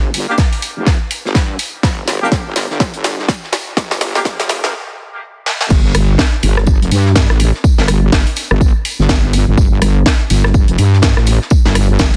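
A heavy, detuned sawtooth wobble bass with chorus and sidechain pumping drives this bouncy, aggressive bass house cut, joined up front by a punchy electronic kick and a layered house kit with cracking snare, rim click and crash cymbal, while a very quiet, dry 70s kit adds a fat snare and tambourine and a clear, loose horn section with light vibrato and dub echo places stabs in the background until 4.2 s, over a filter-swept build-up with drum fills that breaks at 4.7 s before the drop lands at 5.7 s.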